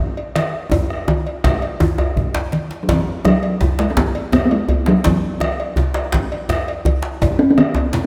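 This West African traditional drum ensemble piece has an earthy, festive mood, moving at 111 BPM in a straight 12/8 with an E major pentatonic center. A metallic cowbell enters first at 0.2 s. A deep, dark, distant bombo joins, while bright thin-skinned damped congas and a medium-tuned djembe with metal rattles sit in the background, and a second medium-tuned djembe sits up front. After an opening drum fill, a resonant talking drum steps forward at 2.8 s as the melodic voice, ranging from E3 to C#4 and trailed by a diffuse ambient delay. The whole mix is soaked in a lush hall reverb, giving this short cut from a longer piece a dreamy, spacious feel.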